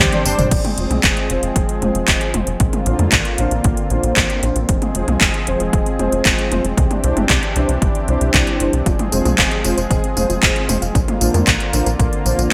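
Melodramatic and bittersweet, this italo disco excerpt moves at 115 BPM in F dorian, opening with a drum fill before a punchy, overdriven electronic kick lands at 0.5 seconds beneath an up-front house kit of metallic hats, handclaps, tambourine, toms and crash cymbal, treated with overdrive and gated reverb. A tight, saturated sequencer bass drives the low end, a lush, detuned unison pad holds sustained chords with chorus, bold, nasal synth brass fires stabs through chorus and digital delay, and a soft, round pluck adds very quiet arpeggios that return at 8.9 seconds. The chords cycle through Fm, Bbadd9 and Cadd9 in a bright 1980s-style digital production wrapped in moderate plate reverb.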